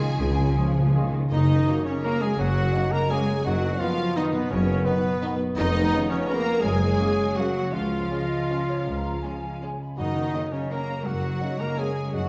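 Set in a dark, reverberant recital-hall sound, this festive, sweeping orchestral ballroom waltz excerpt in a rubato three-time has a lush violin section carrying the melody over a very quiet second violin line, with brief pure-toned flute ensemble phrases, a mellow bassoon, an intense viola section, a round-toned timpani fill that opens the first 1.3 seconds, a ringing thumb-plucked concert harp in arpeggios, dusky French horn and clear trombone sections holding soft chords, light-vibrato trumpet stabs, and a bass of smooth cellos, close focused double basses and a soft-attacked tuba.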